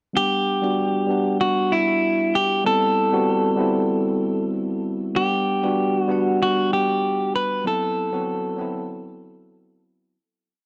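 Smooth chillout at 96 BPM with a light sixteenth-note swing, where a bright, up-front tine electric piano holds rootless chords with syncopated pushes through a low-pass filter sweep over Em9, Am9, Gmaj7 and Am69/F#, while a clean, compressed electric guitar picks a warm, song-like motif through tape echo, all captured in a dry, gritty hardware recording with light reverb before a fade-out from 6.8 seconds.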